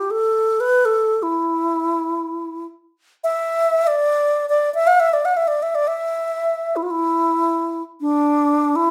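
A rough home-demo sound, with a wet small-room reverb, frames this short fragment cut from a longer Persian piece in E dastgah shur, moving at 80 BPM in a straight 6/8. A wooden-headed alto flute plays alone and up front for the full 8.9 seconds, its bright, reedy, airy tone carrying vibrato, soft attacks and lifted highs, with a slapback echo on its sound. The mood is melancholic and full of longing, the flute ranging from D4 up to an F5 raised by nearly a quarter tone.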